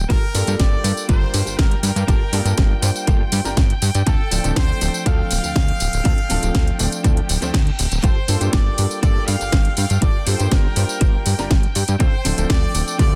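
Sleek and sensual, this nu-disco excerpt moves in a straight 4/4 feel, cut from a longer piece and built over a Gm9 to Dm7 progression. A punchy electronic kick sits up front alongside a fat, detuned sawtooth bass with tube saturation and a plucky filtered attack, while a house kit adds a cracking snare, metallic hi-hats and tambourine with a tape-kissed tone. A bright, punchy trumpet section carries the melody through tape echo, and a twangy, direct-recorded clean guitar picks out a riff in the background, shimmering with ensemble chorus and echo. Behind them, a worn baby grand piano with long sustain and a veiled, con sordino string section holding dark bowed chords both pump against the kick. A reverse cymbal rises faintly at 7.3 seconds, and the whole mix is dry, dense and heavily limited in a modern style.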